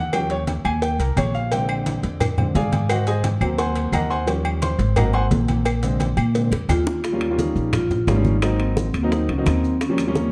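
Dark, roomy studio reverb surrounds this sophisticated, danceable Afro-Cuban jazz excerpt, where a natural-sounding baby grand piano takes a solo up front over thumpy pizzicato upright bass on Eb9, Bb9 and Ab9 chords. Congas with a thin-skinned brightness sit in the background alongside woody claves and grainy maracas, while tight, high-tuned cowbell and bongos and ringing agogo bells and timbales sound close and dry. During a drum fill, a metallic vibraphone with slow motor vibrato enters on the melody at 6.7 seconds as the piece moves into a new section at 7.0 seconds.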